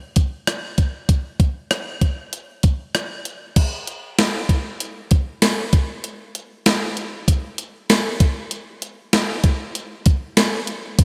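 A gated 80s digital drum machine sits up front in this uplifting, nostalgic pop excerpt at 97 BPM in a straight 4/4, its thumpy kick, gated-reverb snare, rim clicks, hi-hat and crash sounding sampler-like and tape-warm, as if re-recorded in a large room. A jingly, compressed and saturated tambourine slips in very quietly at 4.2 s, shortly after the music moves into a new section at 3.6 s. The bright 1980s-style digital production carries a light reverb overall.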